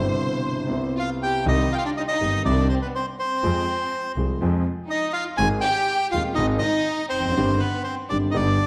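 Tango in C harmonic minor at 122 BPM with a rubato feel, dramatic and melancholic and cut from a longer piece, where a lush, distant bowed violin section sings an expressive, vibrato-rich second line over an up-front concert grand piano with deep bass and long sustain and a clear, focused bowed double bass, and a reedy, warm bandoneon enters up front at 1.0 s with the melody as the harmony moves from Cmaj7 through Cm, Fm and Ab to Cm/G, the whole heard in a moderate scoring-stage reverb.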